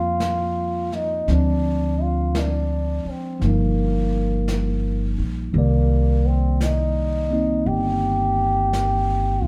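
Late-night and intimate, this slow swung jazz ballad excerpt features a veiled, vintage, cup-muted trombone carrying the melody up front, over clean tine electric piano chords moving from Bb6 through Dm7b5 and Ebadd9/G to Cm7. A woody, thumpy pizzicato upright bass sits prominently beneath, while a brushed drum kit on snare and hi-hat enters softly at 0.2 seconds. The band plays live together in a stone room with moderate reverb.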